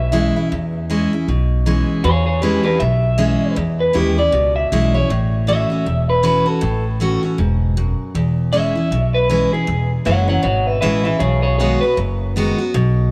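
Rockabilly at a rollicking, upbeat 157 BPM in E major with a swung feel, this cut from a longer piece pairs a twangy, slightly broken-up electric guitar carrying the melody through tape echo until 12.0 seconds with a bright, full-bodied picked jumbo acoustic guitar and a woody pizzicato upright bass, all three up front in a small room as the chords move from E6 to A6, back to E6 and on to B6.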